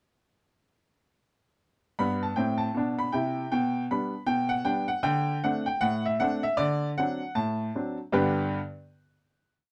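The recording has a dark production with light reverb, while the piano sits up front with a bright, woody tone. This is a short, complete ragtime piece for solo upright piano in 2/4, with a playful, jaunty mood and a swung feel. The piano enters at 2.0 seconds, playing a single-line melody over a stride bass that reaches down to G2. The harmony moves from G through G/B, D5 and D7 before settling back on G. The brief opening section gives way at 8.1 seconds to a final chord, and the piano stops at 8.6 seconds.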